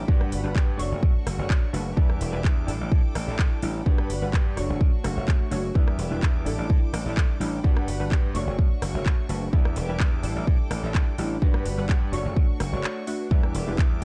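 A punchy, up-front electronic kick drives a straight 4/4 at 127 BPM, with a house kit of handclaps, metallic hi-hats and rim clicks pumping against it, in this feel-good, joyful filtered disco house excerpt in A mixolydian. A gritty, overdriven slap bass and a funky, detuned sawtooth polysynth comp with chorus and phaser cycle through Gmaj7, Dmaj7/F#, Em7 and A7sus4, while a mellow, clean electric guitar riff with 12-bit sampler grit and a biting, intense violin section holding bowed chords sit in the background. The production is dark and warm with little reverb, and a short break arrives at 12.8 seconds.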